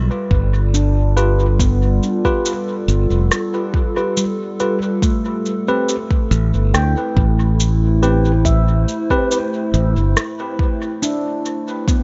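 An echo-heavy mix with light digital ambience and softened highs frames this hazy, spacious stretch of ambient dub, cut from a longer piece. A warbling, detuned tape-like pad holds nostalgic chords under a mellow, ringing handpan whose arpeggios trail into dub echo, while worn, slightly out-of-tune tine electric piano stabs drift through the middle. A deep, up-front electronic kick and a small-room shaker and rim click carry the groove as a growly, punchy fingered bass anchors the shift from G7 to Am9 at 5.0 seconds before dropping out at 10.1 seconds.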